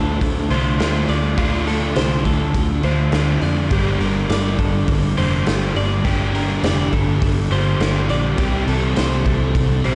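Brooding and hazy, this shoegaze and dream pop excerpt moves at a straight 103 BPM in 4/4 over Dm7, Gmadd9 and C6, with a thick, dark fuzz guitar riff carrying distortion and ensemble chorus beside a crunchy overdriven guitar riff washed in reverse reverb, a bright, twangy direct-recorded clean guitar playing arpeggios through analog chorus and slapback echo, a round, foam-muted vintage bass, and a gritty, saturated garage drum kit with punchy kick that enters at 0.2 s, all set in light reverb and small room ambience with a rolled-off top.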